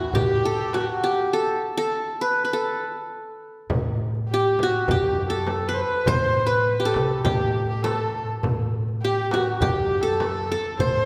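A wet concert-hall reverb with a long 1.8-second decay surrounds this melancholic, soulful excerpt of Turkish makam ensemble music, cut from a longer piece and set in A makam nikriz at a steady, straight 101 BPM in 4/4. Up front, a bright, plectrum-plucked qanun with triple strings carries the melody between E4 and C5. Close behind it, a single bowed kamancheh plays a second line, clear and biting with light vibrato, portamento slides and an airy, earthy bow. Underneath, a pizzicato upright bass with gut strings gives a woody, dark, thumpy foundation. In the background, a crisp, compressed and saturated metal-shell darbuka struck with hard hands sits with a close, dry frame drum. A stop falls from 1.3 to 3.7 seconds, and a new section begins at 3.7 seconds.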